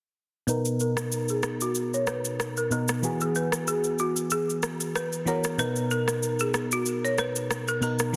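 Afrobeats at 94 BPM with a sunny, romantic mood and a light swing in B major, this short cut from a longer piece sets a glassy, bell-like FM electric piano with chorus on Bmaj7 and Eadd9 chords against a woody, buzzing balafon riff struck with hard rubber mallets and trailed by tape echo, while an up-front electronic shaker and rim click keep time, all under a filter sweep running from 0.5 to 8.2 seconds, light reverb and a dense, heavily limited modern master.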